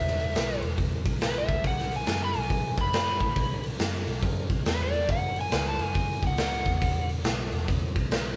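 Blues rock with a southern rock edge, this gritty, raunchy power-trio excerpt swings at 139 BPM in 4/4, with the band playing live together in one room under moderate reverb. An overdriven slide guitar carries the melody as a solo from B4 to B5 over chords moving from E5 to B5, F#5 and back to E5, while a dark, round, foam-muted picked electric bass holds the low end. The raw garage drum kit sits up front on hi-hat, punchy kick and medium-tuned snare, its saturated sound carrying a pumping stone-room ambience and a rolled-off top.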